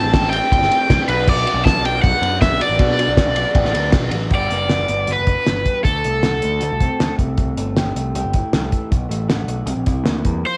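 Indie rock at 157 BPM in G major, carefree yet wistful, cut from a longer piece and carrying the character of a home recording on cassette with light reverb. An up-front, bright, overdriven lead guitar from a cranked stack carries the melody from the start until 7.1 seconds, returning with a brief flick at the very end. Beneath it, a dark, slightly broken-up electric guitar through a small old amp plays a compressed, lo-fi riff soaked in spring reverb and tape grit. An overdriven picked electric bass adds a warm, direct and amped low end, and a cloth-damped, thuddy drum kit sits up front with a tight kick, fat snare and dark, rolled-off cymbals across hi-hat, ride and crash. For the first 4.1 seconds, a very quiet glockenspiel struck with brass mallets traces a vintage, bell-like second line high above. The harmony moves from Am7 and Bm into Gmaj7 and D7 at 4.3 seconds, later passing through Am7, B5 and C7.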